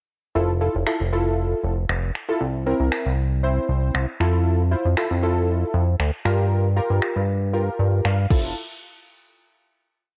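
Dance-pop at 117 BPM in F major, this short, upbeat piece has a summery glow, a home-cassette character and a digital ambience around it. A chorused synth bass, retro and glossy with a nasal edge, carries a syncopated figure built from pulse-wave and sawtooth tones with a filter pluck and a moving notch, pumping against the sidechain from 0.4 seconds. Above it, mellow analog keys with a round, detuned sawtooth sound play syncopated chord stabs in close voicing, colored by chorus, filter sweeps and cassette tape, moving through Fmaj7, C7 and Gm7 before a fill near the close. A smooth R&B drum kit joins at 0.9 seconds with a soft, electronic four-on-the-floor beat of kick, finger snaps and crash cymbal, also tinted by tape. After the verse, the piece lands on a final hit at 8.6 seconds.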